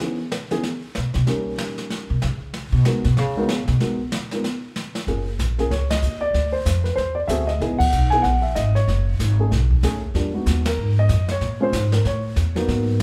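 This is a smoky, swinging jazz piano trio in G# minor, moving at a brisk 189 BPM in 4/4 with a lilting swing on the eighth notes, cut from a longer piece. The upright bass enters at 1.0 s and carries a woody, thumpy pizzicato solo on steel strings up front until 5.1 s. The dark concert grand piano plays the melody throughout, its mellow, vintage tone smooth with deep low end and short sustain. The brush kit adds an airy, polished backdrop of dark cymbals, a medium-tuned snare and a boomy kick. In the second half the full band lands a series of accents as the harmony drifts through rich chords like F#maj9, B13 and Emaj9. The trio sounds as if it is playing live together in one room, wrapped in a moderate large studio reverb.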